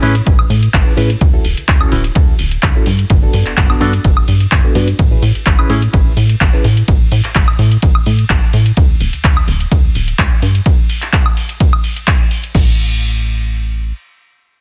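Funky and feel-good, this filtered disco house excerpt moves at 127 BPM in a straight 4/4, set in A major and heard mid-drop from the very start. A bright, reedy electric piano carries the accompaniment with fast tremolo, phaser and sidechain pumping, moving through Amaj7, Dmaj7 and Gmaj7 before falling away at 6.6 seconds. Beneath it, a plucky analog bass built from detuned sawtooth, pulse and folded waves gives a punchy, rounded low end, pumping to the beat and carrying on until 13.9 seconds. A punchy analog drum machine, re-recorded in a small room, supplies crash and ride cymbals, handclaps, hi-hat and woodblock, while an electronic kick sits up front from 0.3 seconds. The drums stop at 12.6 seconds, leaving the bass alone briefly in a dense, heavily limited modern master with digital ambience.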